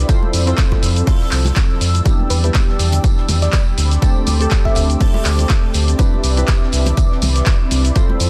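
Late-night and warm, this deep house groove moves at 122 BPM in 4/4 with a light swing on the sixteenths, cycling through Fmaj7, Em7, D7sus4 and Cmaj9 in a short cut from a longer piece. A punchy electronic kick sits up front beside a round, deep analog bass whose sawtooth and sine tones land dark and sustained, both of them anchoring the low end. Around them, a punchy analog drum machine supplies handclaps, hi-hat and shaker, a dry, dark 70s drum kit adds hi-hat, fat snare and tambourine from the background, and very quiet, high-tuned congas ring out as if from a small room. Warm analog keys play detuned pulse-and-sawtooth stabs with a filter sweep, chorus and delay, while a hollow, flute-like pad and an ethereal, warbling vintage pad with built-in reverb hold sustained chords and texture behind them, all three breathing with sidechain pumping. From 2.3 to 5.3 seconds a bell-like, sparkling FM electric piano adds a mellow melody with chorus, tremolo and delay. 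The dense, heavily limited modern master keeps the whole mix full.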